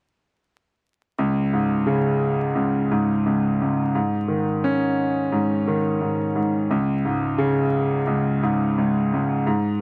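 Dark, warm production with vinyl crackle and a moderate studio reverb frames this confident hip hop passage at 87 BPM in 4/4 with a swung 16th-note feel, where a solo grand piano, present, polished and up front with long sustain, plays alone from 1.2 seconds in its low-to-middle register, moving from Db5 to Absus4 at 3.9 seconds and back to Db5 at 6.7 seconds.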